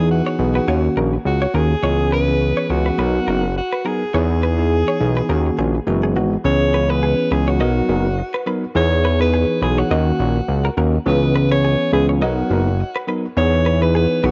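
Breezy and joyful, this afrobeats excerpt sets a present, vibrato-laced alto saxophone melody over bell-like tine electric piano chords, a fat, detuned sawtooth bass with an evolving filter sweep sitting up front, and a twangy, compressed clean guitar riff bathed in lush chorus and tape echo, all colored by the capped high end of a home cassette recording.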